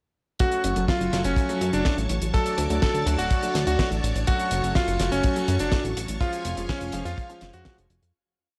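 Italo disco at 124 BPM in F# harmonic minor, nostalgic and melodramatic, where a bright, cutting electric grand piano carries an up-front repeating riff melody with analog delay and shimmer reverb over lush string machine chords with ensemble chorus, while a warm grand piano adds dotted-rhythm stabs in close voicing. Underneath, a tight, dry four-on-the-floor kick and a damped 70s kit with a fat snare and closed hi-hat drive a disco machine beat, joined at 0.6 seconds by a glossy, chorused synth bass with tube saturation playing a galloping sixteenth-note line. The chords move from F#m to D and back before landing on C#/E#, and the whole piece, a single verse with a gritty cassette-tape character, fades out from 5.6 seconds to its close at 8.1 seconds.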